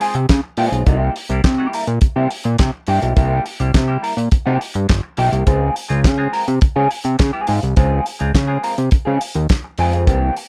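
Disco at 104 BPM in a sultry, danceable mood, this brief cut sets a clean, hollow-bodied semi-hollow electric guitar with wah comping over Dbmaj7 and C7 against a fat, saturated, wave-folded analog synth bass and a damped, dry 70s drum kit with handclaps, hi-hat, a tight kick and a fat snare, all three parts up front in a room with little reverb.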